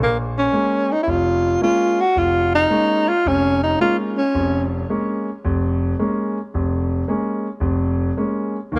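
Moody and cool, this swung jazz excerpt in 4/4 puts an intimate, whispered tenor saxophone up front, its breathy solo melody shaped by vibrato, soft attacks and scooped notes from 0.0 to 4.7 seconds and again at 8.8 seconds, over a clear, natural concert grand piano whose deep-bass accompaniment centres on a single minor seventh chord, inside a dark production touched by light reverb.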